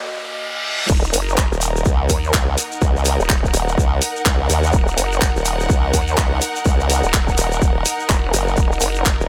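A swung 4/4 groove at 125 BPM drives this aggressive, bouncy bass house excerpt in Eb minor, resting on a single Eb minor chord. It opens with a short break where a riser and reverse cymbal play over a deep, moody analog pad, detuned and wave-folded with chorus, that sits dark in the background and pumps with the sidechain throughout. The drop lands at 0.9 seconds, bringing in a punchy, up-front electronic kick and a layered house kit of crash cymbal, handclaps and hi-hat, both re-recorded in a small room. At the same moment a nasal, resonant vowel-sweep wobble bass arrives, saturated with overdrive and chorus, and a formant-sweep wobble bass built from sawtooth and sine joins at 1.5 seconds, both wobbling in the low register. Above them, a clear, lush studio string section with vibrato adds bowed texture, while a grainy, mellow shekere sits close and dry. Light digital reverb gives the mix a compact sense of space.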